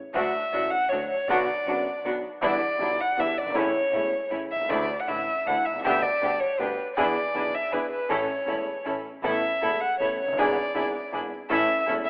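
Tango in 3/4 at 159 BPM with a rubato feel, dramatic and melancholic, this excerpt features an up-front dark violin with woody sul tasto tone and vibrato carrying the solo line over intimate concert grand piano accompaniment with audible action noise, distant reedy chamber string stabs with a gut-string period character, and a boxy bowed double bass in the background, all moving through D, Bm, Em7 and A before closing on E7/G# to A, set in a lush hall reverb with a rough, telephone-like home demo sound.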